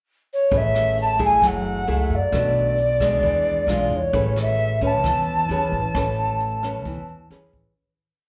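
A breathy clay ocarina leads this short, sophisticated and relaxed bossa nova piece, entering at 0.3 s with tongued, chiffy attacks, vibrato, an unsteady delivery and motif-based melodic phrases built like sentences. It sits up front in the mix, dressed in plate reverb and slapback echo. At 0.5 s the band joins: a classical nylon-string guitar fingerpicks thumb bass notes under syncopated plucked chords, with audible finger squeaks, and it shares the ocarina's plate reverb and slapback echo. Beneath it, a woody pizzicato upright bass on steel strings plays dotted root-and-fifth figures. A distant, roomy brush kit keeps a soft groove on hi-hat, rim click and a boomy kick. The harmony moves through Amaj9, F#m9, Bm7 and E7b9 before resolving to Amaj9. The whole performance sounds like a live club gig heard through the venue's PA, and it fades out from 5.9 s.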